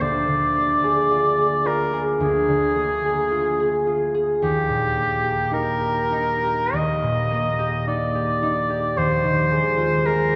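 In a rubato 4/4 at 54 BPM, this tender, lyrical romantic classical fragment in Eb major sets a warm oboe melody with light vibrato and a distant, roomy tone against mellow, ringing fingerpicked concert harp accompaniment, both up front across the full 10.4 seconds and bathed in a cathedral reverb that lingers for 4.6 seconds as the harmony moves from Bb7/D to Eb and then Fm7/Eb.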